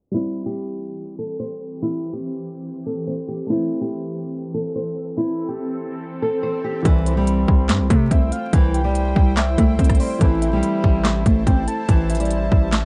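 This brooding, menacing trap excerpt at 143 BPM in half-time opens on a small, thumb-plucked nylon-string guitar melody up front, with audible finger squeak, over a dark, mellow baby grand piano with action noise in the background. A cloudy, evolving granular pad with built-in reverb drifts in at 0.9 seconds as a filter sweep moves across the opening over C and Am chords, and a very quiet electronic swell leads to 6.9 seconds, where a trap kit with a hard-clipped kick, sharp snare, crisp hats, claps and rim clicks enters alongside a heavy, saturated 808-style bass. Moments later, a round, detuned octave-layered synth lead with chorus, delay and vibrato adds a soft second line. The production is dry and warm, with vinyl crackle and a low-pass filter dulling the top end.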